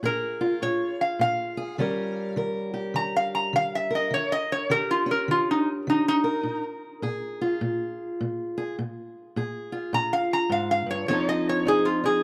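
Blues at 103 BPM in 4/4 with a swung eighth-note feel, this short excerpt cut from a longer piece carries a swaggering, laid-back mood. A fingerpicked steel-string acoustic guitar with a dark, boxy parlour tone supplies the accompaniment from the start, moving through Bb5, Eb7 and F7 chords. From 0.1 seconds a metal-body resonator slide guitar, played with fingerpicks and a steel bar, carries the melody as a solo running to the end at 12.2 seconds. Its sound is metallic and nasal, and it sits higher and a little louder than the accompaniment. Both guitars sit up front in a dry, close recording in the manner of a 1970s studio, touched by light small-room reverb.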